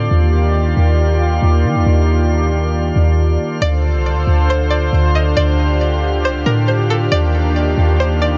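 Lightly reverberant and floating, this blissful half-time hip hop passage sets a deep, boomy 808-style bass and a smooth, chorused analog pad up front, with a glassy harmonics texture drifting lower in the mix, until a twangy, string-like resonator pluck with chorus and delay carries the melody from 3.6 seconds as the harmony moves from Ebmaj9 to Dm7.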